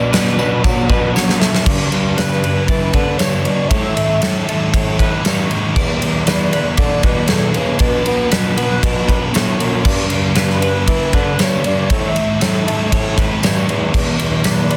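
Shoegaze-tinged dream pop rock at 117 BPM in G lydian, wistful and blissful, this excerpt rides a huge arena drum kit with a punchy kick and a big-room snare up front, with a drum fill from 1.1 to 1.7 s, alongside a jingly tambourine and a clear, soft-attack bassoon carrying the bass line with light vibrato. A dark, fuzzed-out guitar riff with analog chorus pairs with an overdriven semi-hollow guitar washed in reverse reverb, while a twangy twelve-string electric guitar spins chorused, delayed arpeggios in the background. Above them, a velvety, detuned synth lead sings a sustained melody through chords moving from Bm7 to G, A7 and Em7, all folded into a dense, heavily limited modern master with studio reverb.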